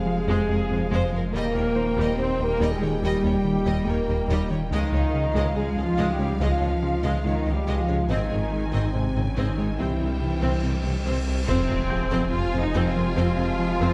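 A straight 4/4 pulse at 71 BPM carries this futuristic, vast cue from a hybrid orchestral and electronic film score in F minor, where a lush violin section with vibrato sings the melody over a background second violin line, intense violas, even cellos and faint, distant double basses, while a dark French horn section and very quiet, close-miked trombones hold sustained chords beside a barely audible, ominous rumbling drone, a saturated sine sub bass and a mellow sawtooth synth bass riff anchor the low end, a soft grand piano adds short-sustained texture, and a huge cymbal swell from 10.0 s breaks into an impact at 11.5 s as the harmony returns to Fm, within a moderate scoring-stage reverb.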